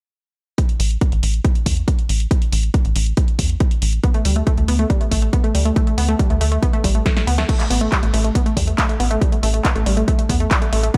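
An overdriven, punchy electronic kick and an analog drum machine with crash cymbal, handclaps, hi-hat and snare, its hats and cymbals pumping to the sidechain, open this bittersweet, euphoric uplifting trance at 139 BPM. They are joined almost at once by an up-front, tight sawtooth sequencer bass that pumps to the sidechain while a filter sweeps across it. A lush, detuned unison pluck arpeggio with delay enters at 4.0 seconds, and a drum fill at 7.1 seconds leads into the next section of this dry mix cut from a longer piece.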